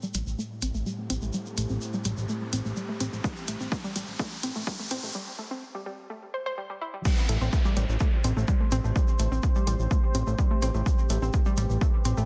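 A straight 4/4 pulse at 126 BPM drives this hypnotic, driving slice of melodic techno in A minor, cut from a longer piece and resting on a single Am7 chord. From the start, a warbly, dusty pluck spins arpeggios through chorus, dub echo and sidechain pumping, joined by a grainy, bright tube shaker, a techno drum kit with smooth high-passed hats and crash, and a fat, nasal, saturated analog bass holding A1 up front. An analog drone with ring-modulated, pulse-width-modulated colour sits in the background on A2 until 5.1 seconds, while a deep, moody pad of detuned sawtooth unison and sine sub octave swells in slowly with chorus and built-in reverb. Filter sweeps on the arpeggio and pad shape a build-up, with a riser and downlifter adding electronic sweeps, and a punchy, layered electronic kick arrives at 3.2 seconds. After a short break, the drop lands at 7.1 seconds, and the dense, heavily limited master with light digital ambience keeps the groove pumping to the end.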